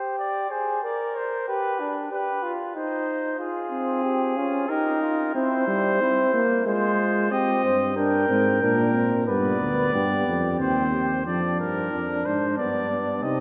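In a straight triple metre, this driving, solemn classical canzona for brass ensemble opens with a soft-attacked, distant trumpet carrying the melody over a mellow flugelhorn second line with light vibrato, both sounding roomy. A warm trombone with vibrato joins up front as accompaniment at 3.7 seconds, and a smooth-topped bass trombone takes the bass from 7.6 seconds. The imitative writing unfolds in the wet resonance of a church, and this fragment of a longer piece cuts off at 13.4 seconds.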